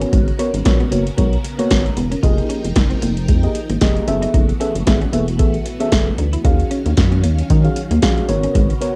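An overdriven analog drum machine sits up front with a deep kick, punchy snare and metallic hats, driving this slick, danceable early-eighties boogie funk at 114 BPM with a swung sixteenth-note feel alongside a rubbery, hollow square-wave bass with a resonant filter pluck. A soft, round FM electric piano with chorus plays the accompaniment over lush, phased string-machine chords, while a slightly broken-up electric guitar riff with analog chorus sits in the background. The chords move through minor eleventh harmonies from Abm11, and this short cut from a longer piece carries light reverb and the vintage character of a home cassette recording.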